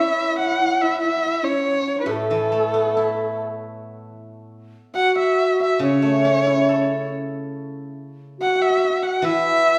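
Graceful and festive, this short cut from a longer Chinese chamber ensemble piece moves freely at about 70 BPM in the A gong mode, with a dark, expressive erhu carrying the melody up front with vibrato and portamento, a mellow, pure low xiao and a shimmering hammered dulcimer in the background adding second lines, and a silvery, fingerpicked steel-string zither ringing out the accompaniment, all heard from further back in a recital hall with a wet 1.2 s reverb.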